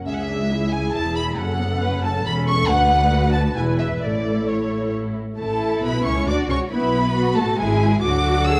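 Classical-period string orchestra music in A major, a quick, lively and cheerful movement in 3/4 at 136 BPM, cut from a longer piece and running about 8.6 seconds, with the harmony passing from C#m through F#m and E to A before a second section closes on D. A close, expressive first violin section carries the melody with vibrato above a smooth, lush second violin line set more distantly, while a focused viola section accompanies and a cello section with portamento pairs with an up-front, clear double bass section on the bass. The sound is dark and warm, placed in a recital hall with a moderate 1.5 s reverb.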